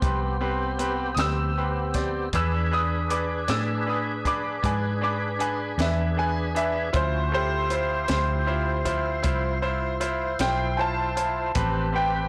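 A clear, woody, slightly detuned upright piano leads this soulful, mournful slow blues in A minor at 52 BPM in 12/8, taking the solo with tape echo over a brilliant grand piano whose action noise is audible, a lightly overdriven tonewheel organ holding sustained chords through a slow rotary speaker and chorus vibrato, a dark, foam-muted electric bass sitting up front, and a compact cocktail drum kit with a high-tuned snare and punchy kick. The harmony moves from a rootless Am7 to E7 at 2.3 seconds and Dm7 at 6.9 seconds before returning to Am7. The drums drop out at 11.7 seconds in this fragment of a longer piece, while light reverb and a blown-out, overdriven recording lend the whole sound a gritty edge.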